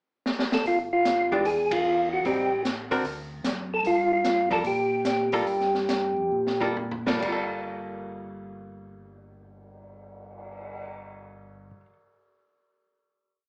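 Soul jazz organ trio in G minor, soulful and late-night, swinging in 4/4 at 129-151 BPM, heard live through a club PA with small-speaker sound: an open, acoustic drum kit with dark cymbals, a high-tuned snare and boomy kick keeps time on the hi-hat with a backbeat and fills at 0.3 s and 6.3 s, a percussive, round tonewheel organ up front plays a motif-based melody through a slow rotary speaker and slapback echo until 6.7 s, a mellow, lightly overdriven organ with chorus vibrato carries a two-feel bass, and a compressed, hollow-body archtop guitar comps in syncopated three- and four-note chord shapes, with a band accent at 1.7 s and a slowing down into a final Gm9 chord.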